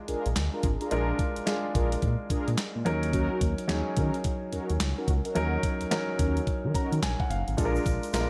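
Light reverb gives this short cut from a longer new jack swing track a polished, punchy sheen, with the groove swinging confidently in 4/4. A crisp 8-bit drum machine sits up front, its sampler-style kit of thumpy kick, medium-tuned snare, hi-hat and handclaps carrying a tape-softened character and the air of a large room. Beneath it, a smooth, gliding synth bass built from sawtooth and square waves holds down the low end with a dark, sustained tone and portamento slides. A warm baby grand piano, also placed up front, plays the accompaniment over Bb7 and Ebm7 changes and takes a fill from 6.5 to 7.6 seconds. Mellow synth brass stabs add a round, detuned, brassy colour with a filter sweep, treated with chorus, phaser and tape echo. In the final moments, from 7.6 seconds, a grainy, bright egg shaker enters quietly in the distant background.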